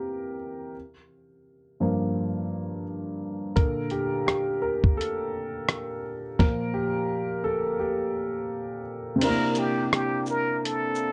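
A woody upright piano with long sustain opens this melancholic, reflective lo-fi hip hop piece in G dorian at 85 BPM, moving through Gm7 and Bbmaj7 with a gentle 16th-note swing, before a gritty, compressed sampler-style drum kit with a thumpy kick, fat snare, rim click, hi-hat and shaker enters at 3.6 seconds. At 9.2 seconds the kick drops out as a breathy, plunger-muted trumpet steps forward with a wah-wah jazz melody, vibrato and a soft attack, its notes trailed by analog delay over a C9 chord. Light reverb and a dark, warm production round out the sound.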